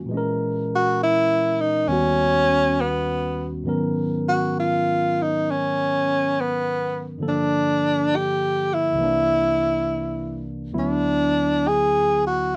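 A breathy tenor saxophone carries the melody up front from 0.8 seconds, playing a mellow, subtoned solo with vibrato, scooped notes and a smooth top in a jazz style. Alongside it, a barky tine electric piano sits clean and up front through a combo amp and comps through changes from A#m7b5 and D#7alt to G#m11, then Gm7, C9 and D69. This intimate, melancholic jazz fragment drifts at a slow 68 BPM swing in 4/4, cut from a longer piece and framed by light reverb.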